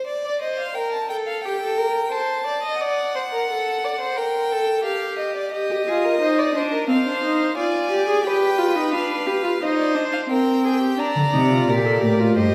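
A clear, focused violin carries the melody of this serious, contemplative baroque-style fugue excerpt for string quartet, joined almost at once by a rich second violin with expressive portamento, then a smooth, even viola from 5.7 seconds and a bowed cello bass from 11.2 seconds, each played with vibrato and set in a recital hall's reverberant space heard from further back in the room.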